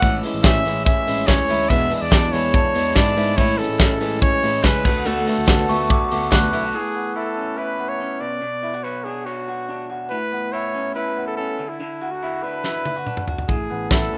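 Jangly indie pop at 142 BPM in A major, this breezy, nostalgic fragment of a longer piece is led by a close-miked, up-front trumpet with light vibrato and scooped notes, its slapback echo shared by the bright, twangy, slightly broken-up arpeggios of an electric guitar through a small old amp. A picked steel-string acoustic guitar, a worn, slightly out-of-tune tine electric piano carrying the bass through overdrive, a punchy modern studio drum kit with a fat snare, very quiet crisp group handclaps and, from 5.5 seconds, a mellow, bell-like glockenspiel played with rubber mallets fill out the opening over chords like Amaj7, E7 and D6. Most of that support falls away at 6.7 seconds, leaving trumpet and electric guitar to drift over Aadd9 and Bmadd9 until a drum fill at 12.6 seconds brings the kit back, with the electric piano returning at 13.5 seconds, in a rough home demo mix with light reverb.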